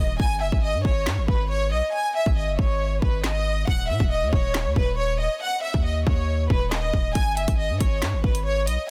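A rich, close-miked violin section opens this dark, menacing drill excerpt, its bowed ensemble melody carrying expressive vibrato and a trail of tape echo. A hard-hitting 808-style bass sounds alongside it from the start, a punchy, heavy sine tone with a noise layer, fast attack and decaying tail. At 0.2 seconds an electronic drill kit joins in a half-time feel, with a hard-clipped kick, woody snare and handclaps, while its hi-hats stay muted until 7.2 seconds, when the harmony also drops away. Until then the harmony moves from G#5 to D#5. The violins, bass and drums all sit up front in a dry, dense, heavily limited modern mix.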